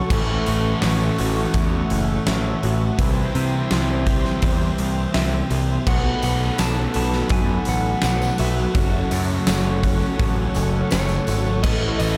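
Over a straight 83 BPM pulse in 4/4, a huge arena drum kit with a fat snare and boomy kick drives this blissful, hazy shoegaze and dream pop excerpt in A lydian, with a growling, overdriven bass punching up front beneath a dark fuzz guitar riff, an overdriven electric guitar riff trailing reverse reverb in the background, and a very quiet, shimmering, octave-doubled twelve-string acoustic guitar picking arpeggios. A brassy, detuned sawtooth pad holds soft-attack chords with chorus through a progression of A6, C, B7 and F#m, and at 5.1 seconds a slightly broken-up, lo-fi electric guitar through a small old amp enters with a delayed melody, followed at 5.9 seconds by a distant, jingly tambourine. The whole dreamy mix is soaked in plate reverb.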